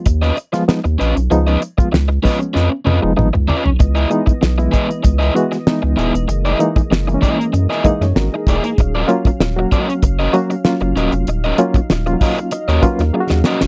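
A barky, reedy electric piano with light overdrive and fast tremolo opens this cool, sly funk excerpt with stabs, joined almost at once by a crunchy picked electric guitar, a thick saturated sub bass and a damped 70s drum kit with a fat snare and tight kick, all sitting up front in a dry, close 1970s-style studio sound. A drum fill from 2.6 to 3.8 seconds leads into the second section, where a mellow, round tonewheel organ enters in the background with sustained chords, slow rotary speaker and chorus vibrato. The chords move from C#9 to C#m9, F#13 and D#m7, with electric piano fills at 7.5 and 11.9 seconds before the excerpt cuts off.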